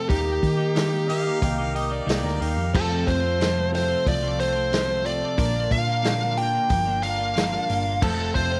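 A straight 4/4 groove from a vintage drum kit with a punchy kick drives this nostalgic, hopeful folk-rock and heartland-rock excerpt, alongside a round, hollow-body picked bass as the chords move through Eb, F and Bb. Up front, a dark, distorted bluesy lead guitar carries the melody over a clean, compressed twelve-string electric riff, a very quiet full-bodied steel-string acoustic guitar, a reedy accordion holding sustained chords, and a clear concert grand piano with audible action noise, heard in a lightly reverberant studio. From 1.1 to 2.7 seconds, a harmonica with a smooth top and light vibrato adds a second line, touched with slapback echo.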